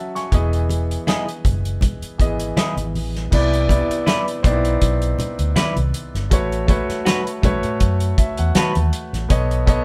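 Lush and warm, this short cut from a longer 1970s-style soul piece moves at an easy 80 BPM in 4/4 with a gentle swing on the sixteenths. A clear, intimate grand piano opens the music, its action noise audible and its notes ringing with long sustain, joined almost at once by a small-room soul drum kit with a tight kick, medium-tuned snare, hi-hat and crash, its top end rolled off. A dark, round, foam-muted fingered electric bass and soft-handed congas, close and dry but sitting in the background, arrive at 0.3 seconds as the harmony settles on Emaj7 before shifting through Cmaj9, A69 and B9. From 1.1 seconds an electric guitar through a small old amp plays a picked riff, slightly broken-up, lo-fi and compressed, up front in the mix until 8.7 seconds. Near the close the piano adds a fill starting at 7.8 seconds, and moderate studio reverb gives the whole band the feel of players sharing one room.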